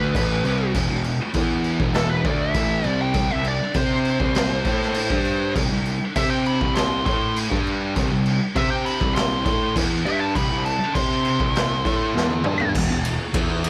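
A straight, heavy 4/4 groove drives this brooding stoner and doom metal passage, cut from a longer piece, with a raw garage drum kit sitting up front: boomy kick, medium-tuned snare, gritty saturation and a rolled-off top in a small room, ending with a fill at 12.2 seconds. Two thick fuzz guitars grind out the riff in the background over a growly, overdriven picked bass with a bright edge, moving from E minor to C5 and landing on E5. Above them, a dark fuzz lead guitar solos from the start until 12.7 seconds, colored by wah and digital delay.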